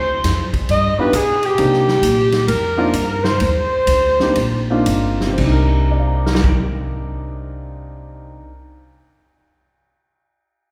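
Big band swing jazz in C minor at 114-134 BPM, this sultry, swinging fragment of a longer piece opens with a mellow saxophone section carrying the melody over woody pizzicato upright bass and a big-band drum kit with a punchy kick, a natural-sounding grand piano joins on accompaniment at 1.0 seconds and plays on to the close, and the tempo slows from 1.6 to 5.4 seconds, the whole heard from further back in a wet recital hall.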